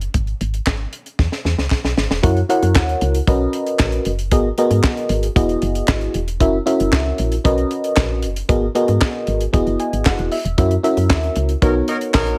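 A mellow FM electric piano, soft and full-bodied with a touch of chorus, carries this smooth, danceable early-eighties boogie funk, entering at 2.2 seconds and cycling through lush chords such as Bmaj9, G#m9 and Emaj9 before adding a short fill at 9.5 seconds. Underneath, a woody FM bass with a round, dark tone and a fast, decaying attack holds the low end from the very start. A tight funk drum kit, dry and up front with a high-tuned snare, tight kick, hi-hat and handclaps, opens the piece alongside the bass and plays a fill just before the piano arrives. A very quiet group handclap, crisp and close, sits in the background from 0.7 seconds onward. Near the end of this cut from a longer piece, a clear pop-style horn section with light vibrato enters at 11.6 seconds, all under a light reverb.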